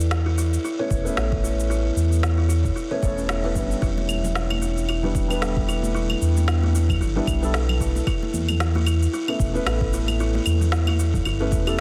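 Hypnotic and mystical, this short organic downtempo excerpt moves at 113 BPM in 4/4 with a swung sixteenth-note feel, as a smooth, dark sawtooth synth bass sits up front beneath electronic shaker, woody snare and claves, a deep layered electronic kick entering at 0.9 seconds, a buzzing, woody kalimba playing filtered arpeggios with tape echo, a soft felt-muted upright piano pumping with sidechain and echo, and ringing congas joining in the background at 4.0 seconds, all moving between Aadd9/E and Em7 in a light small-room reverb with a dense, heavily limited master.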